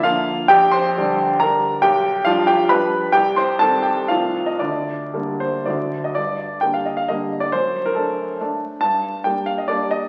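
Heard through the crackle of a very old 78 rpm record, a solo grand piano sits up front in a wet recital hall whose reverb lingers for about 1.7 seconds. The piano itself sounds clear and intimate, with a natural tone and audible action noise from the instrument's mechanism. This is a romantic classical dance in triple time, its dotted rhythms and rubato giving it a wistful yet capricious character. The harmony moves through minor-key chords with a diminished colour before settling on the dominant near 5.7 seconds. A second passage begins at 6.2 seconds and returns to the home chord by 8.8 seconds, while the piano spans from deep bass notes to a bright upper register. The recording is a short fragment cut from a longer piece.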